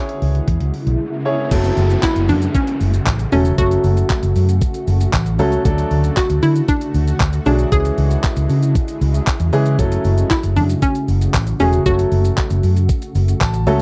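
A clear, polished baby grand piano and a shimmering, ethereal pad with chorus and built-in reverb open this driving, confident dance-pop excerpt in F# minor at 116 BPM, joined by a thumpy, tape-warm 12-bit drum machine playing kick, hi-hat, handclaps, shaker and crash, and a dark, round, foam-muted fingered electric bass, with the piano, pad and bass all pumping from sidechain compression while a background riser and downlifter appear at 0.6 seconds. At 2.0 seconds a hollow, bouncy square-wave pluck carries the melody with chorus and slapback echo, alongside a very quiet, jingly tambourine, over chords moving through C#m, F#m, D and back. The close, dry 1970s-style studio sound keeps the punchy bass and the drums up front, and a grand piano fill arrives at 13.2 seconds.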